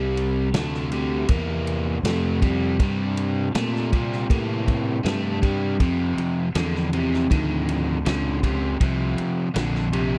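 A straight, steady 4/4 groove carries this short cut from a longer piece of swaggering blues rock with a southern rock edge. A vintage acoustic drum kit enters at 0.2 s with a punchy kick, a medium-tuned snare and ride cymbal, its natural studio-room tone rolled off at the top. A biting, overdriven electric guitar, picked and double-tracked, plays the riff with a touch of spring reverb, while a fingered electric bass adds bright, growly fuzz and overdrive of its own. The harmony rests on C before moving to F5 at 5.8 s. Guitar, bass and drums all sit up front in a dry, close 1970s-style studio sound that feels driving.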